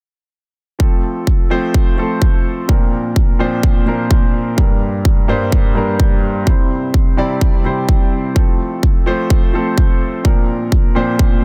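The sound is dry, with little reverb and a dense, heavily limited modern master that pushes everything forward. This festival progressive house excerpt moves at 127 BPM in a straight 4/4 in F major, and its mood is triumphant and anthemic. A warm grand piano carries the accompaniment from 0.8 seconds, polished and present with a long sustain, its tone treated with sidechain pumping and tape echo as it spans G2 to D5. Alongside it, a layered electronic kick drum sits up front, punchy and overdriven, running from 0.8 to 11.3 seconds. The harmony cycles through F, Bbadd9, Gm and C before returning to F and Bbadd9, giving the short passage a rousing, lifted sweep.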